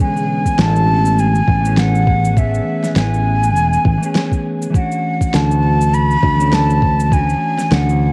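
Smooth and warm, this 8.1-second sunset chillout fragment at 101 BPM in A major, swung on the sixteenths and tuned to A4 = 435 Hz, sets a breathy, up-front silver concert flute melody with vibrato and shimmer reverb over a dark, clean electric guitar, a growly fretless electric bass with analog chorus entering at 0.6 s, a soft electronic kick, and an overdriven electronic cabasa with a fat snare, while the harmony moves from Amaj9 to Dmaj7 at 4.7 s inside a spring-reverb room with the feel of a home cassette recording.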